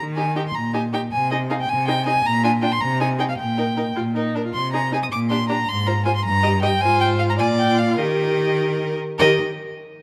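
Cheerful and lively, this short cut from a quick classical-period string quartet movement in Eb major moves in a straight 6/8 at 105 BPM, with a clear, smooth first violin carrying the melody up front alongside a focused, close cello bass from the start, while a rich, more distant second violin and a focused, distant viola join at 0.2 seconds, all four bowed with vibrato and caught by close, detailed microphones in light reverb as the harmony cadences home to Eb at 8.0 seconds.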